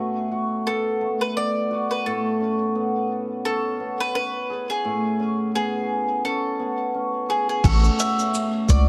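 Lightly reverberant, this delicate, pastoral folktronica excerpt opens with a woody, double-strung mandolin melody and shimmering, ringing cimbalom arpeggios, both up front with delay, while a filter sweep colors the cimbalom. At 7.6 seconds a round, deep analog bass arrives with a muffled, thumpy, tape-warm electronic kick in the background and a compressed electronic crash cymbal and shaker, all over a gentle swung groove.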